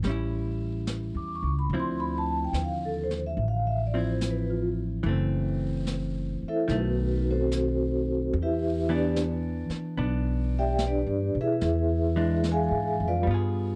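A mellow vibraphone played with soft mallets carries the melody in this jazz ballad, entering at 1.2 seconds with a ringing, metallic tone, a fast motor vibrato and a touch of slapback echo in a boxy small-room sound. The mood is romantic and late-night, moving at a relaxed 72 BPM in 4/4 with a gentle swing on the eighth notes. Underneath, a dark, clean electric hollow-body guitar plays picked, compressed accompaniment, while a woody pizzicato upright bass on steel strings sits up front beside it. A brushed drum kit, with brushed snare, a medium-tuned snare and hi-hat, adds a natural studio-room pulse further back in the mix. The harmony moves from A7 through Dm9 and F#m7b5 to B7b9, Em7 and E7b9, captured as a dry, close 1970s-style studio recording cut from a longer piece.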